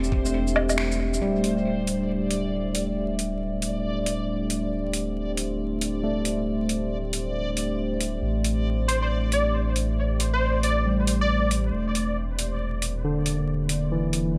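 Future garage at 137 BPM with a swung 4/4 shuffle, this rainy, nocturnal excerpt sets a barky, bright tine electric piano with tape echo over a dark, chorused ambient pad and a round sine sub bass, all pumping against the beat, while a reversed, granular texture drifts high above. The overdriven garage kit sits up front with metallic hi-hats, finger snaps, shaker and woodblock, and a catchy, detuned plucky lead with 12-bit grit and dub echo appears only from 8.9 to 11.5 seconds. The chords move from C69/E to D5, Am7 and Em7b5 in an echo-heavy mix laced with vinyl crackle.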